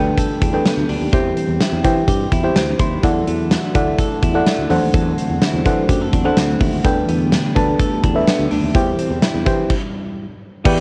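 A moody, nostalgic slice of 1980s-style pop opens at once with a warbling, mellow FM electric piano up front, its fast-attack notes decaying over a faint noise layer and a cassette tape tint. Beneath it, a dark, very quiet cello patch from a string machine holds soft, sawtooth-edged chords with ensemble chorus and a sub octave. A clean, picked semi-hollow electric guitar plays a compressed, hollow-body riff, bathed in lush chorus and analog delay. A growly, round fretless bass sustains underneath, and at 0.2 seconds a huge arena drum kit joins with a punchy kick, fat snare, hi-hat and crash in hall ambience. Everything sits in a modest booth-like space with a home-cassette character, and the band hits a stop from 9.7 to 10.7 seconds before this fragment of a longer piece ends.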